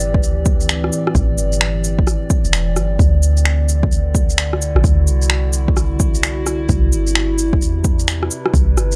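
Future garage at 130 BPM with a swung 16th-note feel, this melancholic, ghostly clip is cut from a longer piece and moves through Am11, D9 and Cmaj9 chords. A warbling, nostalgic pad of detuned square, triangle and sawtooth tones holds slow-blooming sustained chords, colored by chorus, phaser, built-in reverb and sidechain pumping, while a soft, round, sine-like 808-style bass sits deep and dark beneath, pumping along with it. Up front, an overdriven electronic kick from 0.1 s and gritty electronic cabasa, shaker, finger snaps and rim click carry a small room ambience in an otherwise dry, gritty hardware sound.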